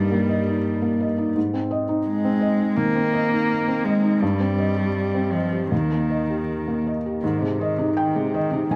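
Neoclassical piano and strings in Ab major, this short excerpt from a longer piece moves at 83 BPM in 4/4 with a rubato feel, carrying a hopeful, tender mood. A felt-muted upright piano provides the accompaniment from 0.0 to 8.8 seconds, its soft, mellow tone sitting up front with audible action noise that makes the sound feel intimate. A single cello carries the second line across the same span, played sul tasto with light vibrato, a soft attack and an airy bow, its tone touched by tape echo. The harmony passes from Eb/G to Ab, then through Cm/G and Eb before settling back on Ab at 7.2 seconds, where the opening material begins again. Close, detailed microphones and light reverb keep both instruments near the listener, giving the recording a quiet, personal closeness.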